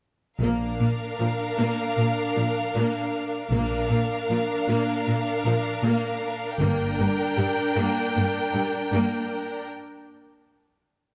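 A full string body of violins, violas, cellos and double basses enters together at 0.4 s in a majestic, adventurous cinematic excerpt at 78 BPM in Bb major, moving from a Bb chord to G minor at 6.6 s. Lush, up-front violins with soft attacks carry an expressive second line above rich, even violas, while focused, distant cellos and smooth double basses supply the low end with vibrato. The basses drop out at 7.0 s and the cellos at 9.0 s, leaving the upper strings to ring until 9.7 s before a short break into the scoring-stage reverb.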